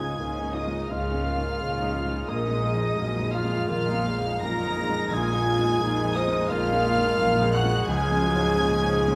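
Moving and hopeful, this cinematic excerpt from a longer piece unfolds at 86 BPM in 4/4 with a rubato feel, all instruments entering together at the start of its 9.2 seconds. A rich studio violin section carries the high melody, bowed sul tasto with light vibrato and a soft, intimate attack. Beneath it, a second line is shared by an airy large flute ensemble with crisp attack, a distant, roomy solo cor anglais with a mellow vibrato tone, and a symphonic violin section whose pure, floating sound sits close. A clear baby grand piano in the background offers accompaniment with audible action noise and long sustain, joined by a faraway symphonic viola section, while a French horn section holds sustained chords and a very quiet concert harp rings out fingerpicked arpeggios. A chamber cello section and a symphonic double bass section anchor the bass, and the harmony moves from Dbadd9 to Bb7sus4 at 2.3 seconds before returning to Dbadd9 at 7.9 seconds, all set in a moderate scoring stage reverb.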